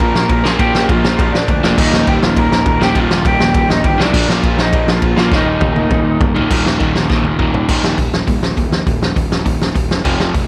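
A loose, up-front acoustic drum kit with a fat snare, punchy kick and a gritty, saturated character drives this energetic, upbeat punk rock passage alongside a double-tracked crunchy overdriven guitar riff, a growly fuzz bass sitting in the background, and a dark, lo-fi lead guitar melody that drops out at 6.2 seconds, with drum fills at 5.3 and 7.1 seconds.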